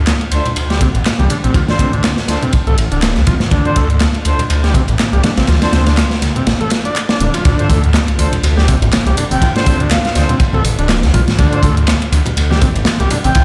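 Raw and swaggering, this breakbeat cut rides a swung 122 BPM groove in D minor on a Dm7 chord, anchored by a thick, swirling phased saw bass and a crunchy, saturated acoustic breakbeat kit of tight kick, dark ride and snare, layered with electronic garage handclaps and hi-hat and very quiet congas and bongos. A buzzy overdriven combo organ riff with heavy vibrato and mellow brass stabs carrying 12-bit sampler grit both trail dub echo, while a break at 6.5 seconds gives way to a drop at 7.5 seconds marked by a very quiet sub drop. A bright, reedy silver flute with an old-record sound briefly surfaces at 9.3 seconds, all set in a bare stone room as if played on a big sound system.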